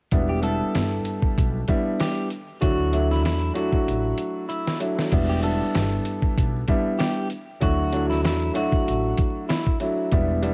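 Moody and dark, this boom-bap hip-hop excerpt rides a lightly swung 96 BPM groove in E minor, its chords moving between Em7 and Dadd9 under a home-cassette haze of vinyl crackle and little reverb. Up front, a compressed, gritty sampler-style drum kit with a thumpy kick and fat snare sits beside an intimate upright piano whose woody, vintage tone carries audible action noise, while a pizzicato upright bass adds a dark, acoustic low end. From 0.3 s a slightly broken-up electric guitar plays a fingered melody through lush chorus, and a drum fill from 3.9 to 5.1 s leads into the second section.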